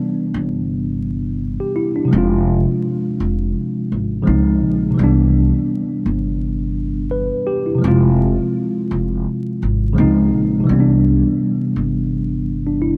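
A worn, slightly out-of-tune tine electric piano with a cassette-tape character carries this nostalgic, cosy lo-fi hip hop excerpt at 84 BPM, with a gentle swing on the 16ths, cycling through Cmaj9, Fm and Dbmaj9 in C major. A woody pizzicato upright bass joins at 0.3 s, sitting up front in the low register beneath the keys. A lush hall reverb and vinyl crackle soak the mix in a dreamy haze.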